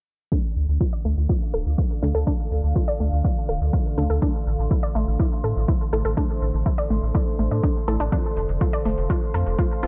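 A dry, tightly filtered mix carries this dark, cinematic melodic techno excerpt in D minor at 123 BPM, where an overdriven punchy kick and a round, deep analog bass sit up front as a detuned analog pluck arpeggiates through a chorus and dub echo, a muted phaser-tinged dub chord stab pulses in the background, a slow-blooming moody pad from 1.6 seconds and an evolving pulse-width drone add sidechain-pumped depth over filter sweeps and a Dm–Am–F progression, and metallic hi-hats creep in faintly at 8.1 seconds.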